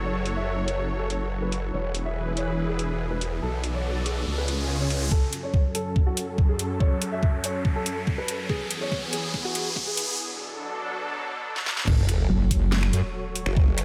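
A dark, mellow grand piano melody opens this menacing, aggressive half-time dubstep excerpt at 142 BPM in F# minor. The piano is filtered and trailed by tape echo over a lush, detuned supersaw pad that pumps with sidechain, while a saturated, formant-filtered sawtooth wobble bass with overdrive and chorus growls up front. A layered dubstep drum kit with a huge snare, metallic hats, finger snaps and crash cymbal joins, and an electronic riser and sub drop effect enters. At 5.1 s a knocking, tape-colored electronic kick arrives up front as the chords move through F#m, E and Bm7, and a filter sweep on the pad runs through a build-up with drum fills. The piano stops at 10.0 s ahead of a brief break, and the drop at 11.9 s brings back the formant wobble bass, briefly joined by a metallic FM wobble bass, under an impact. The whole mix is dreamy and soaked in a moderate hall reverb.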